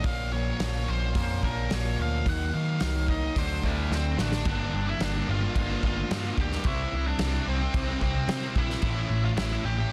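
An up-front, round and punchy overdriven picked bass anchors this brooding, dark stretch of quiet-loud alternative rock, with a sludgy guitar riff and a loose indie drum kit, its cymbals dark and kick punchy in a small room. A dark octave-fuzz lead guitar carries the melody throughout, while a bright, twangy clean guitar plays arpeggios in the background with subtle chorus and digital delay until 4.5 seconds. After a drum fill at 3.9 seconds, a thick fuzz guitar joins the riff behind the mix, and the whole passage sits in a dense, heavily limited modern master with light reverb.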